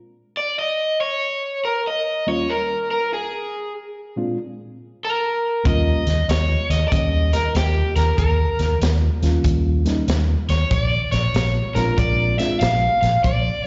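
An overdriven semi-hollow guitar leads this swaggering, laid-back electric blues shuffle from 0.4 seconds, its dark, picked hollow-body tone sitting up front with slapback echo and digital delay over Eb9 and Bb9 chords. A clean, reedy electric piano with its own slapback joins at 2.3 seconds, and at 5.7 seconds a round, punchy, foam-muted vintage fingered bass arrives alongside a gritty, saturated breakbeat kit of tight kick, medium-tuned snare and hi-hat. The cut sounds like a live gig heard through the venue's PA, with recital-hall reverb and a muffled top end that stops short of 7.7 kHz.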